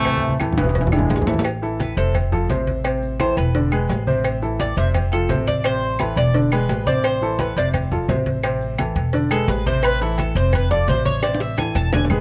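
Dry, close-miked and detailed, this fiery, danceable salsa excerpt puts its lead instruments and bass up front. A bright trombone section opens with a short ensemble phrase that ends at 1.3 seconds, over a clear, slightly worn concert grand piano with a deep low end and short sustain, and a growly, thumpy upright bass played pizzicato on steel strings. From 1.8 seconds a metallic, picked Cuban tres takes a solo for the rest of the passage, its double strings partly doubled at the octave. The percussion includes ringing metal-shelled agogo bells and timbales, plus low-tuned thick-skinned congas, round bongos and cowbell struck with soft hands, woody claves, and grainy, mellow maracas, most sitting in the background. Drum fills mark the opening and return near 11.2 seconds, while the harmony cycles through A minor, F and E7.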